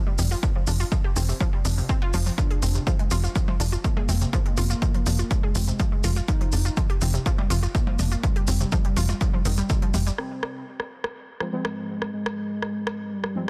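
Melodic techno at 123 BPM in F dorian, hypnotic and cinematic, this excerpt from a longer piece moves through Fsus2, Bb/F and Cm/F before settling on Fm. A tight, driving sequencer bass holds F1 up front with tube saturation and sidechain pumping, beside a punchy, tape-warm electronic kick re-recorded in a small room. A layered techno kit adds smooth low-passed hats, filtered percussion blips and a rim click, while a grainy, vintage-toned cabasa sits low in the mix. A round, detuned analog pluck spins arpeggios through chorus and dub echo, and from 2.4 seconds a soft, dark octave-layered lead with vibrato and digital delay carries the melody. After the bass, kick and pluck drop away near 10 seconds, a brassy, bright synth stab enters at 11.4 seconds over the drums and lead, all inside digital ambience and a dense, heavily limited master.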